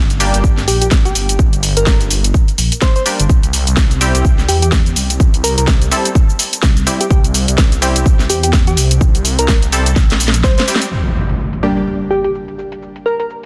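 Bass house at 126 BPM in G dorian, gritty and aggressive with a swung 16th feel, this excerpt pairs a punchy, tape-warm electronic kick and a garage kit of cracking snare, warm hats, cabasa and crash with a thick, swirling phased saw bass that pumps under sidechain, while nasal band-passed chord stabs with chorus and tape echo and a round, keys-like FM lead trace a Gm to C progression before a drum fill at 10.0 seconds gives way to an impact at 10.9 seconds and a filter sweep on the stabs over a dense, heavily limited master.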